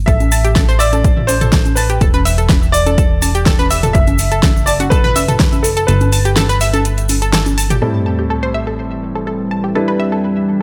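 Progressive house at 124 BPM in A dorian, emotional and expansive, opens with a punchy, wave-folded analog bass pumping under a clear concert grand piano melody with digital delay, a detuned analog pluck arpeggio with chorus and tape echo, an overdriven punchy kick, a deep house kit with fat snare and metallic hats, a grainy egg shaker in the background, and electronic congas and toms from a small room. The kick drops out at 5.9 seconds, and at 7.8 seconds a sub drop impact arrives as a felt-muted upright piano takes up soft, intimate stabs. An evolving, warbling wavetable pad with a filter sweep enters at 8.5 seconds, over chords moving from Am7 to Em7, in this short cut from a longer piece.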